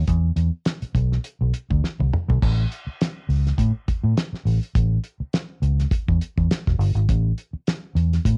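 A dry, cassette-recorded home take cut from a longer piece carries a playful funk groove at 103 BPM in A mixolydian with a light sixteenth-note swing, built on an up-front, round, foam-muted vintage fingered electric bass and a cloth-damped, thuddy drum kit with a fat snare, tight kick, dark cymbals and a rolled-off top, whose fill from 1.8 to 2.4 seconds leads into the longer second section.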